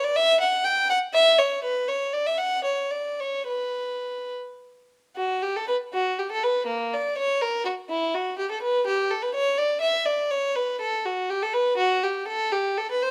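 Introspective and flowing, this brief passage from a longer baroque-style suite movement is written for unaccompanied violin in B minor and 6/8 time. The tempo moves with rubato between 69 and 84 beats per minute, counted in dotted quarters, giving the line a breathing, unhurried quality. A single bowed violin carries everything, sitting up front with a gut-string, reedy voice, light vibrato and period-style playing across a range from A#3 to G5. An opening phrase runs to 5.2 seconds, after which a second section unfolds until the close at 13.1 seconds. A moderate stone-room reverb surrounds the instrument, lending the solo line a resonant, intimate setting.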